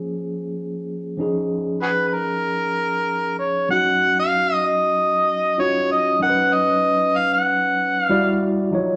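Moderate large studio reverb and the feel of a band playing live in one room frame this smooth, cinematic soul excerpt at 96 BPM in 4/4, with a light swing on the sixteenths. A mellow, clean tine electric piano, heard through its built-in speakers, sits up front as accompaniment from the start, moving through minor-seventh, minor-ninth and suspended-ninth chords. At 1.8 seconds an amplified, overdriven harmonica takes a gritty jazz-style solo melody until 8.4 seconds, colored by light vibrato, tongue slaps and scooped notes.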